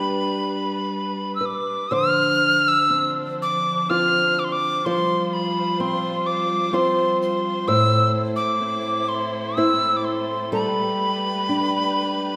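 A bright, airy wooden whistle with chiff and tongued, slightly unsteady vibrato carries a wistful, pastoral Celtic slow air at a rubato 63 BPM in 3/4 from the first moment, sitting close and up front over a small, fingerpicked nylon-string guitar with fresh strings and audible finger squeak, while a lush, bowed symphonic string section holds smooth-topped sustained chords further back, the whole passage cut from a longer piece and set in the generous reverb of a church or concert hall as the harmony moves from G through Dm7, Fsus2 and Am to Gadd9.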